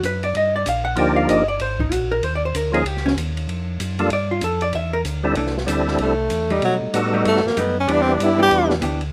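A swinging, bluesy soul jazz organ trio opens on a dark, compressed hollow-body jazz guitar soloing up front, over a round, clean tonewheel organ bass with chorus vibrato and slow rotary speaker and an acoustic drum kit in a small room with a boomy kick, a medium-tuned snare and a rolled-off top. From 1.0 s a fat, lightly overdriven percussive organ carries the melody with key click, third harmonic percussion, chorus vibrato and slow rotary speaker, and at 6.0 s a breathy, close-miked tenor saxophone with scooped notes takes the solo. Light reverb and a rough home demo mix give this fragment of a longer piece an unpolished feel.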